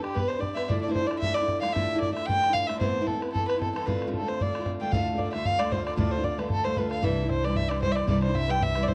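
A wild, spirited Celtic reel in D dorian, this excerpt races along at 227 BPM with a light swing, led up front by a single dark, nasal fiddle whose bowed, reedy gut-string tone sits close to the ear over a picked steel-string acoustic guitar and a damped, tight bodhran. At 4.9 seconds the tune moves into a new section and a woody, growly pizzicato upright bass joins underneath, as the chords shift from Dm toward Cadd9. The whole recording carries the wobble of worn cassette tape, with warbly pitch drift and a wet studio ambience.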